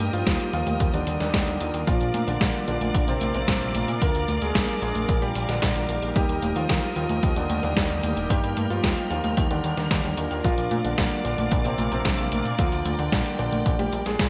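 This playful, romantic italo disco excerpt opens with a polished grand piano melody echoed by digital delay over bowed, vibrato-rich chamber strings holding sustained chords, dark chorused synth brass stabs set in the background, a fat, nasal, saturated analog bass and an up-front, clean 12-bit drum machine playing cabasa, congas, hi-hat and a gated-reverb snare, with a punchy overdriven electronic kick joining at 0.3 seconds, the whole mix set in a plate reverb with bright 1980s-style digital production.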